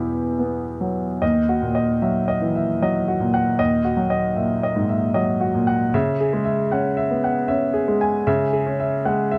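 The recording has a dark production with light reverb, and the piano sits up front. This short passage, cut from a longer piece, is neoclassical minimalist music for a solo concert grand piano, played in three-four time with a rubato feel that gives it an intimate, tender mood. The piano's tone is smooth and vintage, with a deep bass, and its part spans from D#2 up to G#5. The harmony opens on an Emadd9 chord, moves to D#m at 1.2 seconds, and settles on C#m at 5.9 seconds.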